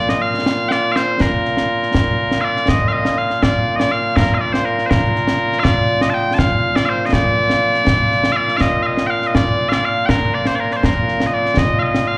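A live gig heard through the venue's PA, with a moderate club reverb, frames this stirring, proud piece of Scottish pipe music in 6/8 at 81 BPM in Bb major, cut from a longer performance. Loud, bright bagpipes carry the melody up front from the first instant to 12.2 seconds, piercing and continuous as a solo voice ranging from Bb2 to A5, dressed in plate reverb and slapback echo. Close, acoustic concert snare and bass drum with dark cymbals sit just behind, their own slapback echo giving the beat a short repeat.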